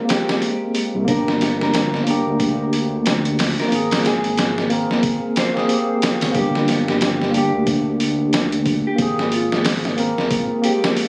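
Captured on a phone in a dry room with vinyl crackle and compression, this cinematic, smoky trip hop passage at 91 BPM in G phrygian pairs a clean tine electric piano, treated with harmonic tremolo, tape echo and a filter sweep through its first 6.4 seconds, with a dark, fingered electric guitar melody set back under phaser and tape echo, a muffled, pitched-down sampler-style drum kit with a thumpy kick and overdrive sitting up front, and a deep, rumbling detuned saw bass that enters at 0.9 seconds as the chords move between Abmaj7 and Gm.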